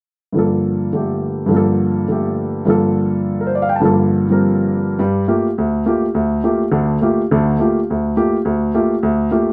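A warm, vintage grand piano enters at 0.3 seconds, lands on a Gm9 chord at 0.4 seconds and carries this short jazz cut entirely on its own, its smooth tone sitting up front from the low bass register to the upper treble. The swung feel and intense, hypnotic mood hold through two sections, the second arriving at 5.0 seconds, with a moderate studio reverb giving the sound a natural sense of room until it ends at 9.5 seconds.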